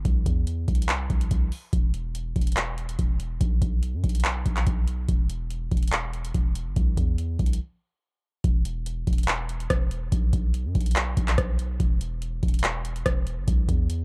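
A dark, dry production frames this melancholic, brooding trap cut, set at 143 BPM in a half-time feel. A booming analog drum machine sits up front with a deep kick, metallic hi-hats, handclaps and rim clicks, its sound re-recorded in a small room, while a long, sine-like 808-style bass with a fast attack rings out mellow and decaying beneath it. A brief break at 7.6 seconds leads into a new section at 8.4 seconds.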